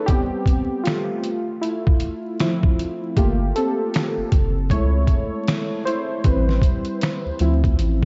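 A mellow, detuned sawtooth keyboard carries this melancholic, nostalgic lo-fi hip hop excerpt, playing a solo line from the start that is softened by chorus, a cassette-tape haze and a low-pass filter with a filter sweep. Moving at 78 BPM in 4/4 with a swung sixteenth-note feel, the track opens on a break as a gritty, pitched-down sampler-style drum kit enters at 0.1 seconds, with a thumpy kick, a medium-tuned snare, hi-hat and finger snaps sitting up front. At 3.2 seconds a deep, thick, saturated sub bass arrives, its sustained sine tone filling out the low end. The harmony drifts through rich minor-ninth and major-seventh colors, moving from Am9 and Fmaj7 to Gm9 and F#m9 before returning to Am9 and settling on Dm9. Light reverb and a bed of vinyl crackle, with the top end rolled off, give the short fragment a dusty, worn character.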